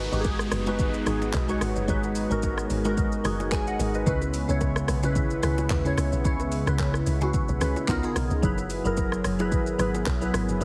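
Glassy, detuned digital keys with chorus stand out in this soulful, late-night amapiano excerpt, set over a dark, sustained analog pad that pumps in the background, a woody, punchy log drum bass, a deep house kit of deep kick, metallic hats, handclaps, rim click and shaker, very quiet, close and dry bongos and congas, and a downlifter that stops at 4.1 seconds, all within a heavily compressed, radio-like sound with light reverb.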